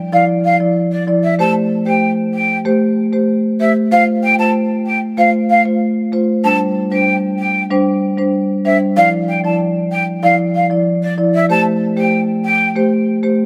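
A soft-malleted marimba and a breathy jazz flute begin together at 0.1 seconds in this hypnotic, sultry dancehall excerpt, set in A minor at 95 BPM in a straight 4/4. The marimba carries the accompaniment with a woody, round tone from its rosewood bars, sitting slightly above the flute in level and moving through Dmadd9, Am7, F and Csus2 before circling back to Dmadd9 and Am7. Above it, the flute sings the melody in its upper register with a hollow, straight tone and a gentle attack, its metal body giving the line a faintly breathy edge. Light reverb and a small-room ambience surround both instruments. The flute drops out at 12.7 seconds, leaving the marimba alone until the cut at 13.5 seconds.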